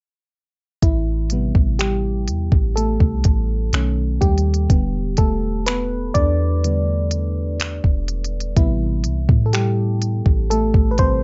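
A slow, straight 4/4 groove at 62 BPM from a tape-warm electronic R&B kit of soft kick, smooth hi-hat and finger snaps carries this sensual, longing contemporary R&B fragment in A minor, tuned to A4 = 438 Hz, where a deep, round sine-like 808-style bass and a dark, soloing FM electric piano with a noise layer sit up front from 0.8 to 11.2 seconds over Am7, B7 and Em7 chords, all in a dry, dull-topped mix cut from a longer piece.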